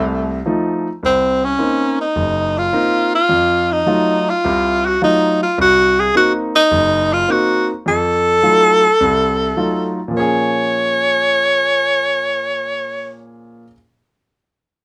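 A tenor saxophone and a baby grand piano open together in this moody, late-night swing jazz excerpt, the saxophone up front with a warm subtone and vibrato over the piano's clear, natural accompaniment through half-diminished and altered dominant chords that settle on a minor seventh at 10.1 seconds, set in a modest club reverb, before the saxophone drops out at 13.2 seconds and the piano carries on alone to 13.7.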